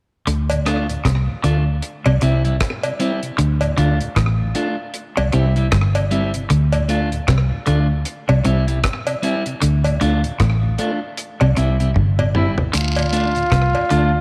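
Roots reggae at 77 BPM in D minor, serious and laid-back, where a round, foam-muted vintage bass sits up front with tube saturation beneath a dark, dry drum kit with a tight kick and slapback echo, a hollow-bodied semi-hollow guitar riff in the background, a scooped clean electric guitar washed in spring reverb and dub echo, a very quiet tonewheel organ with key click and slow rotary vibrato, and close cowbell and jawbone-type rattle, all cycling between D minor and C until a drum fill at 12.0 seconds and a distant, roomy flugelhorn with scooped notes and dub echo entering at 12.4 seconds.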